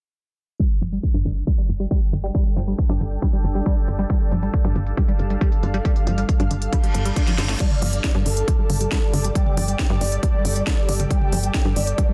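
A dense, heavily limited uplifting trance excerpt with light reverb, driving and emotional at 137 BPM in straight 4/4, built around a Gsus2 chord. An up-front layered kick with a cracking snare and smooth hats sits alongside a punchy ring-modulated sequencer bass and a nasal, detuned arpeggio synth, both pumping under sidechain as filter sweeps move through them, joined at 2.1 seconds by a shimmering, ethereal granular pad with an octave-up sheen. A reverse cymbal and drum fill lead into 7.6 seconds, where a huge, euphoric supersaw lead enters with a bright, detuned unison melody.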